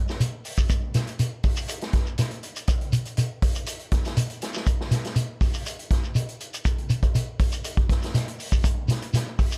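Driving and hypnotic, this short afrobeat cut, taken from a longer piece in a straight 4/4, puts a vintage drum kit up front with a punchy kick, medium-tuned snare and hi-hat in a natural studio-room sound, while a grainy, mellow shekere sits close alongside it from 0.1 seconds, all captured dry with little reverb.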